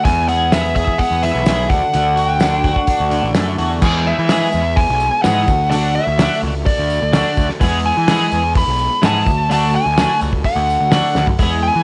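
A dark, fuzz-drenched lead guitar carries the melody in this hypnotic, trippy psychedelic rock excerpt, its distortion trailed by tape echo as it moves between D5 and B5. Beneath it, a clean, compressed twelve-string electric guitar plays a riff through harmonic tremolo, double-tracked and up front, while a round, overdriven fuzz bass anchors the low end from 0.1 seconds. A cloth-damped, thuddy acoustic kit with a fat snare, tight kick and dark cymbals drives a straight 4/4 at 127 BPM, landing a fill at 11.2 seconds, and a jingly tambourine sits very quietly close by from 0.5 seconds. A vintage, mellow combo organ holds sustained chords in the background as the harmony rocks between E and D. Light reverb and a rolled-off top give the whole a hazy, period feel, with the tuning set at A4 = 443 Hz.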